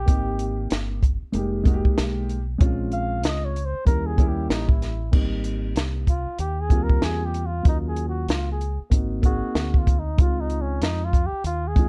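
A breathy, vibrato-laden flugelhorn solos with scooped notes over a round, punchy fingered electric bass from the start, joined at 0.1 seconds by a dark, boxy grand piano with audible action noise and a dry, up-front cocktail drum kit with a punchy kick, high-tuned snare, hi-hat and dark crash, in this warm yet cool jazz-hop excerpt at 95 BPM in Ab major, swung on the 16ths and moving through Abmaj9, Fm11 and Eb7b9 toward Dbmaj9 in a nearly reverb-free room.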